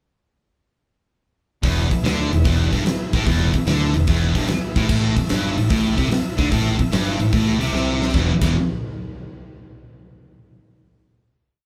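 A thick, double-tracked fuzz guitar sits up front with a distorted single-note riff in this swaggering, driving piece of blues rock and southern rock, swung and played live in one room with a wet studio reverb. Beneath it, a growling overdriven bass in the background doubles the riff as a boogie figure, a huge arena drum kit pounds out a big rock groove with a fat snare, punchy kick and bright cymbals, and a lightly overdriven tonewheel organ holds full chords with swells and changing inversions through a slow rotary speaker. The whole band enters at 1.6 seconds, and a drum fill at 7.7 seconds leads into a final chord at 8.1 seconds.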